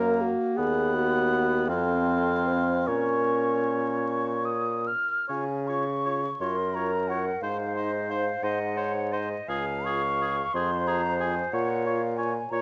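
An airy, hollow concert flute sings the yearning melody with vibrato and tongued notes, carrying this melancholic, romantic slow movement for wind quintet in a rubato 6/8 that is cut from a longer piece. Beneath it a close-miked oboe with light vibrato shapes a second line, while a clear clarinet and a warm French horn fill in the accompaniment, and a bassoon sits up front on the bass line. All five play throughout, moving into a second section at 5.3 s, framed by light reverb and a layer of vinyl crackle.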